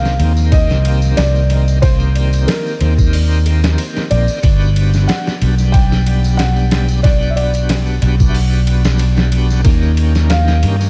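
A dark, melancholic trip hop excerpt opens with a soft, felt-muted upright piano carrying an intimate, short-sustained melody through dub echo, over a lightly overdriven tonewheel organ whose key click, slow rotary speaker, tremolo and tape echo give it a full, shouting edge. A growly, amped fingered electric bass sits up front, while a gritty, pitched-down boom bap drum kit with a thumpy kick, medium-tuned snare, hi-hat and ride plays with a gentle swing, colored by small room ambience and analog delay. A faint acoustic tambourine adds live-room texture as the harmony moves from Cm7 to Gmaj7 to D#7 in a dry, echo-heavy mix.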